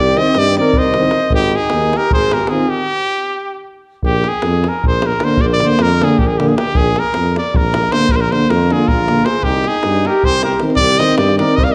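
Wild and virtuosic, this brisk Balkan brass band fragment in 7/8 at 310 BPM features a bright, up-front trumpet melody with light vibrato over a distant, roomy tuba bass and tight, dry davul, with a mellow flugelhorn second line and two background euphoniums, one dark and one mellow, that drop out at 2.7 seconds for a stop lasting until 4.0 seconds. The euphoniums return at 5.2 seconds and the flugelhorn at 8.7 seconds, all bathed in wet recital hall reverb and the warbly pitch drift of worn cassette tape.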